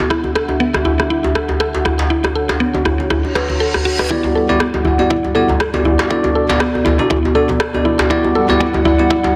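Afro house at 120 BPM in E dorian, this short excerpt from a longer piece feels driving and earthy, with a 16th-note swing under its 4/4 pulse. A deep, moody analog pad, detuned and wave-folded with a slow attack and lush chorus, holds sustained chords through Em9, Dmaj7 and Bm7 while sidechain pumping breathes through it. Up front, a tight, cracking djembe played with hard hands carries the groove alongside a tape-warm afro-pop kit of rim clicks and toms, its snare softly clipped. A woody, round FM pluck with a fast attack, short decay and a moving notch spins arpeggios through chorus and delay. A brief reverse cymbal leads into the build-up at 4.1 seconds, where a bell-like tine electric piano adds bright, clean stabs, a deep electronic kick enters and a drum fill runs to the end. Moderate plate reverb gives a digital ambience to a dense, heavily limited modern master.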